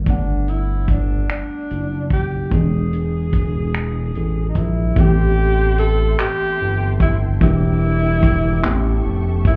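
A worn, slightly out-of-tune tine electric piano and a smooth, mellow synth bass open this late-night, yearning slow R&B excerpt in 6/8 at 49 BPM in A minor, joined at once by a dry, tight-kicked soul drum kit of finger snaps, handclaps, hi-hat and kick drum and a breathy tenor saxophone melody with scooped notes, vibrato and tape echo, while a lush, woody bowed string section enters in the background at 5.0 seconds over chords from Gmaj7 to A7, the whole heard muffled as if through a wall with a club reverb.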